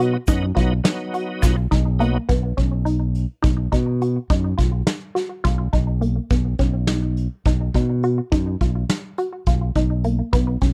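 A squelchy, detuned sawtooth pluck spins intricate arpeggios through chorus, phaser and slapback echo in this driving progressive instrumental in a lopsided 7/8, cut from a longer piece. For the opening 2.2 seconds a shouting, lightly overdriven tonewheel organ with chorus vibrato and a slow rotary speaker adds a full accompaniment, while a grainy egg shaker sits briefly in the background. Up front, a bright, direct fingered electric bass and a vintage brush kit with a punchy kick and rolled-off top carry the groove in a small, pumping room with little reverb.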